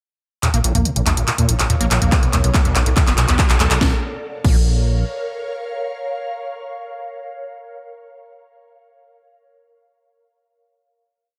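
Bright, 1980s-style digital production with light reverb frames this dark, intense piece of driving peak-time techno at 142 BPM in Bb harmonic minor, where an overdriven, cracking drum kit with claps, hats, toms and crash plays a fill through the build-up from 0.4 seconds alongside a squelchy acid bass riff under a filter sweep and a rumbling detuned saw bass, with a very quiet riser entering at 1.8 seconds; a punchy four-on-the-floor kick joins at 2.1 seconds, and an ethereal pad with chorus and phaser carries the final Bbm chord to 8.0 seconds.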